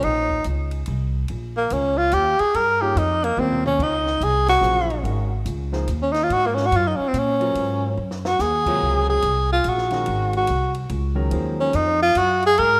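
Spiritual and hypnotic, this modal jazz excerpt in a swinging 3/4 is led throughout by a breathy tenor saxophone solo. Placed up front, the saxophone sounds whispered and intimate, with vibrato, soft attacks and scooped notes in a jazz style. An up-front pizzicato upright bass gives a woody, thumpy pulse with steel strings. A warm concert grand piano with deep bass and a natural tone sounds at the opening, then returns as accompaniment from 2.8 s to 12.0 s. A compact cocktail drum kit stays in the background with a high-tuned snare and tight kick, adding short fills at 3.4 s and 8.0 s. A moderate, lush hall reverb blends with small room ambience in a rough home demo mix.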